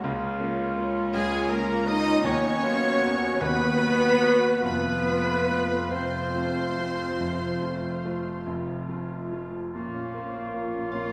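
A concert grand piano with deep bass and long sustain shares a tragic, passionate melody with a chamber violin section bowed softly over the fingerboard in this rubato romantic movement for piano and orchestra in 12/8. Hollow flutes carry a second line while bassoon and a floating viola section accompany and a mellow French horn section holds chords in the background, and a dark cello section and double bass section anchor the bass. A rich second violin section and a distant oboe join at 1.1 seconds, and a bright clarinet enters at 9.7 seconds, all set in the reverberant bloom of a recital hall.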